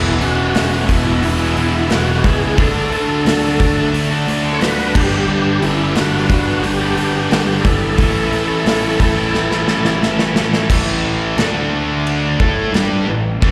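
Heard through a venue's PA with recital-hall reverb and a touch of small-room ambience, this sunny, driving classic rock cut opens with a gritty, thick overdriven tonewheel organ carrying the melody through a fast rotary speaker and chorus vibrato, joined by a compressed fuzz lead guitar on a second line. Underneath, three bright, tight distorted guitars play a picked riff, two of them in the background, one double-tracked and one very quiet, while an up-front, punchy fuzz bass and a big acoustic rock kit with bright cymbals drive the groove. The organ and lead guitar drop out at 10.0 s, and a drum fill from 9.3 s carries the band into a power-chord section.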